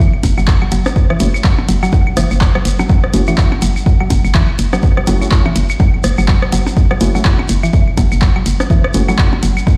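Minimal techno at 124 BPM in F# minor, hypnotic and clinical, with a swung 16th-note feel resting on a single F#m7 chord through this brief section cut from a longer piece. An up-front punchy electronic kick anchors a hollow, bouncy FM bass that pumps under the sidechain, while a tape-warm analog drum machine adds handclaps and hi-hat, joined by delayed electronic claves, blips and rim clicks and a grainy, close shekere. A woody, round mallet-like pluck repeats a riff with chorus and delay, and from 1.2 seconds a dark, wave-folded organ stab punctuates the groove, all set in a stone room that sounds like a big sound system playing in a bare space.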